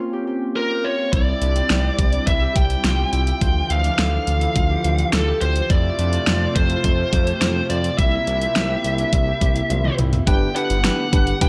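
A dark, distorted lead guitar carries the melody up front from 0.6 seconds, its bluesy overdriven tone set off by a slapback echo, in this wistful, nostalgic synth-pop passage cut from a longer piece. Beneath it, a brassy, detuned analog pad holds sustained chords in the background with chorus, vibrato and an evolving filter swell, while a ringing, fingerpicked Celtic harp plays arpeggios through its own slapback echo. At 1.1 seconds a smooth sawtooth-and-triangle synth bass arrives alongside a layered, electronic pop drum kit, whose knocking kick, fat snare and warm hats are overdriven and wrapped in gated reverb and sit up front with the bass. A drum fill leads into a new section at 10.3 seconds, where a bell-like, clean tine electric piano joins in as accompaniment. The mix has a light reverb, and the minor-tinged chords move toward a brighter major close.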